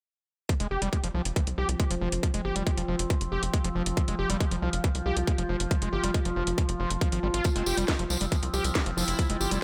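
Psychedelic trance in an intense, psychedelic mood, this short cut from a longer piece opens at 0.5 seconds with a tight, up-front electronic kick, a kit of cracking snare and metallic hats, a punchy sawtooth sequencer bass and a squelchy, screaming distorted acid riff whose resonant filter sweeps throughout, its sound pumping against the kick and trailing dub echo. Just after, an evolving drone of slow-blooming sustained chords with moving overtones swells in behind, and a jingly tambourine arrives at 7.4 seconds. A bright, metallic FM wobble bass line, saturated and kept in the background with tape echo, joins shortly after, all under light reverb.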